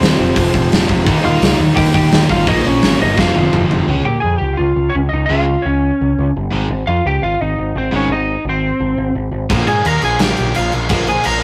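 An urgent, raw punk rock fragment opens with a twangy, slightly broken-up lead guitar melody up front over a growling, overdriven picked bass, a cranked stack guitar riffing in the background, two very quiet, bright distorted guitars (one double-tracked) and a big, punchy acoustic drum kit that plays a fill and drops out at 3.8 seconds, along with one of the distorted guitars, as the music shifts into half time, with the kit and that guitar returning at 9.5 seconds, captured in a rough rehearsal-room recording with stone room reverb and saturation.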